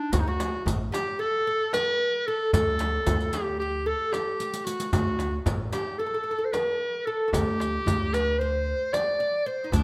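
This Turkish makam ensemble piece, cut from a longer work, moves in a straight 9/8 at 225 BPM counted in eighths, hypnotic and melancholic in D makam hicaz. A bright, forceful clarinet with vibrato carries the jazz-inflected solo melody up front, while a plectrum-plucked fretless oud with double strings adds a second line and a woody pizzicato upright bass anchors the low end. Underneath, a crisp metal-shell darbuka sits in the background beside a deep, distant frame drum and a riq with jingling hard-hand strokes, with a drum fill at 4.4 seconds in a moderate recital-hall reverb.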